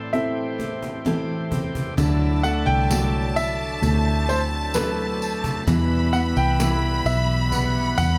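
A heartbroken, longing pop ballad fragment opens with clear, polished piano chords and a melody, a gritty overdriven tonewheel organ turning through a slow rotary speaker, and full-bodied picked steel-string acoustic guitar arpeggios in the background, while a snappy, distant cajon plays a fill; at 2.0 s a lush, vibrato-rich violin section adds a high second line, a dark, round, foam-muted electric bass comes up front, and a jingly tambourine sits in the background, all over an Am to Dadd9 to Em progression in light, small-room reverb.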